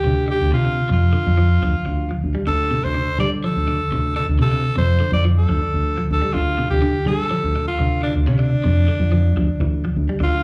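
Heard through a live venue's PA with club reverb and small-room ambience, this defiant, funky afrobeat fragment in straight 4/4 sits on a single Dm7 chord, with an up-front, gritty alto saxophone carrying the melody through plate reverb, slapback echo and analog delay, a slightly broken-up picked electric guitar running phased arpeggios, and a round, punchy fingered bass entering at 0.1 seconds with a dark, direct, amped tone.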